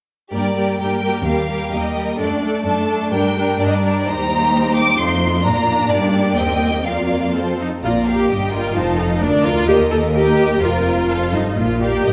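Set in a reverberant concert hall, this stormy, dramatic excerpt of a quick classical-period movement for string orchestra moves in 2/4 at 121-134 BPM with rubato, as a lush, vibrato-rich violin section carries the melody over a second violin line, up-front smooth violas and a clear, focused cello bass, shifting from G minor to Bb major at 4.1 s before a rich double bass section joins at 7.8 s.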